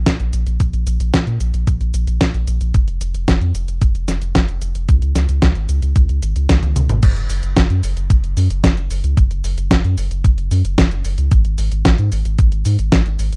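Italo disco with a nostalgic, danceable straight feel, cut from a longer piece, where a round, deep analog bass with a fast attack and dark sustain sits up front beside a thumpy electronic kick and a clean 12-bit drum machine of cabasa, hi-hat, crash, toms and a fat snare, all in a dry, close 1970s-style studio sound, with a drum fill at 6.5 seconds leading into a new section at 7.0 seconds.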